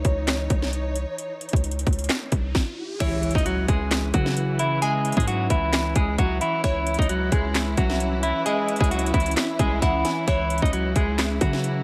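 A lightly reverberant studio mix carries this melancholic, menacing trap excerpt at 132 BPM in a half-time feel, in C# harmonic minor. Lush bowed strings with vibrato hold sustained chords beneath a deep, boomy 808-style bass and an up-front, overdriven drum kit of hard-clipped kick, sharp snare, metallic hi-hats, handclaps and crash cymbal. A very quiet electronic riser from 2.0 s leads into an impact at 3.0 s, where a dark, clean picked electric guitar takes the melody with spring reverb and a glassy, detuned wavetable pluck adds a second line in the background, coloured by chorus and tape echo.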